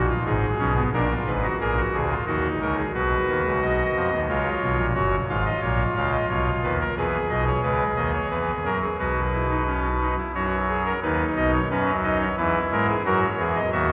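A pipe organ sounds from the opening second on a soft reed voice, an oboe-like solo stop with baroque voicing placed up front, carrying a stately, joyful three-part fugue in 3/4 at 89 BPM across a range from F#1 to E#5. The counterpoint moves through shifting harmonies such as G#madd11, A#7 and D#m before settling into B major from 7.0 s, then passes through C#m7 and F#sus4/B to close the passage on E and F#7 at 13.1 s. A drenched cathedral reverb with a long 5.5-second decay gives the sense of hearing the instrument from further back in the room, and this 13.9-second cut is lifted from a longer piece.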